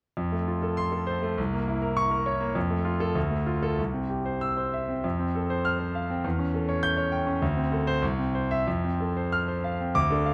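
In a flexible, rubato 2/4 at around 90-105 BPM, this heroic, brilliant virtuoso piano study in F major unfolds as a short passage cut from a longer classical piece, with a solo concert grand playing from 0.2 to 10.3 seconds across a span from C2 to G6. The harmony moves from F through C7b9, Dm and an A7/E before settling back on F. Close, detailed miking puts the smooth, vintage-toned piano up front with a deep bass and long sustain, set in a recital hall with moderate reverb.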